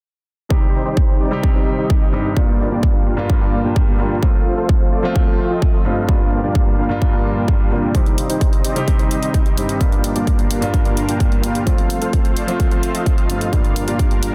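Anthemic and euphoric, this festival progressive house passage in G minor at 129 BPM pairs a warm grand piano accompaniment and a lush, slow-attack supersaw pad sitting in the background with a huge, thick, detuned supersaw riff carrying tape echo and a filter sweep, all three pumping against a punchy, up-front electronic kick, while an electronic hi-hat joins at 7.9 seconds over a Cm, Gm7 and F progression beneath a dense, heavily limited modern master with light reverb.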